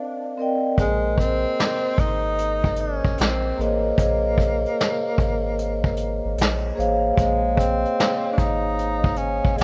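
A lazy 75 BPM groove in 4/4 with a swung sixteenth-note feel gives this hazy, reflective lo-fi hip hop excerpt in Bb minor its easy sway, as brushed drums with a punchy kick and a round, deep sub bass arrive together at 0.8 seconds after a short opening break. Up front, a mellow vibraphone played with soft mallets rings out chords from Cm11 into Bbm11, its metallic tone softened by a cassette-tape wash. Alongside it, a breathy, whispered tenor saxophone carries the intimate jazz melody with gentle vibrato and a slapback echo, all set in light reverb with a rough home-demo character.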